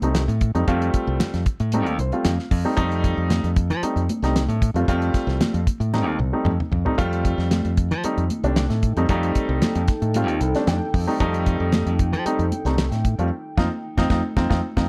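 Soaring and slick, this electric jazz fusion excerpt in F mixolydian moves at a straight 114 BPM in 4/4, with a present, polished baby grand piano comping up front and adding fills at 1.7 and 10.4 seconds, a bright, punchy fingered electric bass, a damped 70s drum kit with a fat snare and tight kick that plays a fill at 5.9 seconds, high-tuned congas sitting close and dry in the background, and a deep, moody, warbling ambient pad with chorus entering at 8.1 seconds before the band hits an accent at the close, all in a lightly reverberant studio space.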